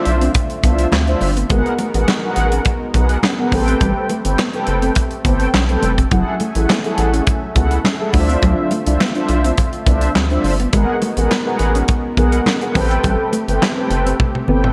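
Early-eighties boogie funk with a late-night, funky mood, moving at a steady straight pulse in this short clip cut from a longer piece. A rubbery, hollow square bass sits up front with a bouncy filter pluck, joined by a punchy modern studio drum kit of kick, medium-tuned snare, hi-hat, toms and handclaps that ends on a fill at 14.2 seconds. Mellow synth brass carries the accompaniment with a round, detuned tone, vibrato and chorus, while a bold analog pad holds sustained chords in the background with a soft filter swell. A dark, clean electric guitar plays a fingered riff very quietly, and close, dry congas with a thin, damped skin add light percussion. The minor ninth chords and a lush hall reverb give the mix a big arena sound.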